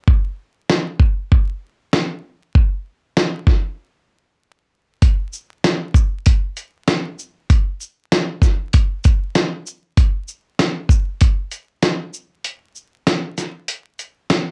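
The rhythm is a 4/4 hip hop groove at 97 BPM, its 16th notes swung at 59%, carried entirely by a dusty soul drum kit in a sampler style that enters at 0.1 seconds. Hi-hat, kick drum, shaker and snare drum make up the kit, with a thumpy kick and a medium-tuned snare at natural pitch. The kit sits up front, compressed and gritty, re-recorded in a small room and given a cassette tape character. Light reverb, vinyl crackle and the feel of a home cassette recording lend the piece a warm, nostalgic mood, and breaks fall at the start and again from 12.4 seconds. This short excerpt is cut from a longer piece.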